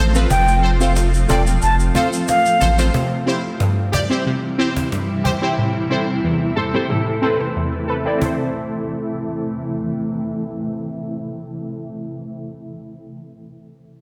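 A dreamy mix soaked in lush hall reverb frames this bouncy, sultry dancehall excerpt, built on punchy, detuned synth brass stabs colored by chorus and phaser and a blurred, evolving granular cloud pad holding sustained chords over F, C and A minor. A deep, saturated sub bass, woody cajon and vintage tube shaker open the piece beneath a pure, expressive concert flute melody with vibrato and analog delay, and the bass, shaker and flute fall away around 2.9 seconds as a filter sweep begins. Fingerpicked nylon-string guitar arpeggios with fresh strings arrive at 6.6 seconds, and the brass and pad carry on to the close.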